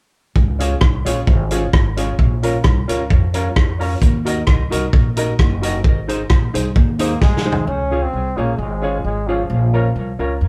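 A punchy, up-front vintage drum kit drives this bouncy, cheerful ska excerpt, played live in one room with light reverb, alongside growly pizzicato upright bass, a dark, clean hollow-body jazz guitar treated with dub echo, and woody upright piano stabs, while a bright, distant trombone enters at 7.0 seconds with scooped notes just before a drum fill at 7.2 seconds closes out the kit's part.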